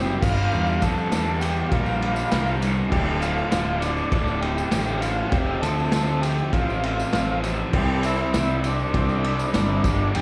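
A straight 4/4 pulse at 100 BPM drives this raw, menacing garage rock excerpt, heard live through a club PA with little reverb, as the vintage drum kit with its dark cymbals and punchy kick joins at 0.2 s alongside a jingly tambourine tucked in the background. An up-front, round fuzz bass holds the low end beneath a bright, double-tracked overdriven guitar riff with slapback echo, while a buzzy combo organ with heavy vibrato plays the melody over a very quiet, reedy organ holding sustained chords. The progression moves through Gm, Dm, F and C.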